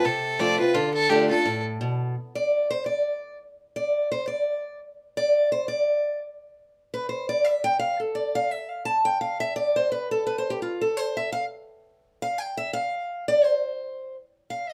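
A biting fiddle with an airy bow and light vibrato opens this lonesome, driving bluegrass excerpt, carrying the melody close and up front before it drops away at 1.6 seconds. Beneath it, a boxy, picked acoustic archtop guitar supplies the accompaniment, set in D dorian at a brisk 170 BPM in 4/4 with a swung eighth-note feel. The brief opening moves from F to D minor, and at 2.2 seconds the chord changes stop as a steel-string acoustic guitar solo begins and runs to the end of the cut. The fiddle's earthy, single-player tone sounds intimate against the guitar's warm, boxy body. A moderate studio ambience gives the performance a natural, lightly reverberant space.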